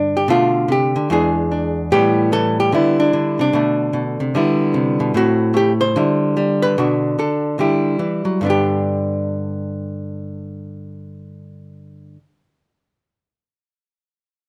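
A swung 4/4 feel drives this short, playful solo jazz excerpt, cut from a longer piece and carried entirely by a single archtop guitar, miked and amplified, that runs from the opening moment to 12.2 s. The clean, dark, hollow-bodied electric tone sits up front in a light reverb, its picked lines and voicings moving through suspended and minor-seventh colours such as Bm7b5, D13sus4 and Am before settling on G at 8.4 s. The playing spans from low E2 up to C5, giving the lone guitar a rich, close presence.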